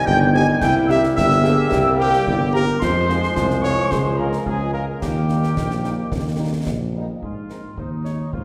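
Heard in the reverberant space of a church or concert hall, this short cut from a festive, proud military-style march for wind band in 2/4 features a soft-attacked solo cornet on the melody, while a pure wooden piccolo with expressive vibrato, a euphonium and a tight woodwind section carry second lines around it. A clear trombone section holds sustained chords and a very quiet French horn section adds accompaniment. Beneath them, an up-front tuba with a smooth top anchors the bass alongside concert bass drum, snare drum and clash cymbals with dark cymbals and a close, dry sound. The piccolo stops at 6.6 s and the euphonium and trombones at 6.9 s, and the harmony arrives on an Ab chord at 7.2 s.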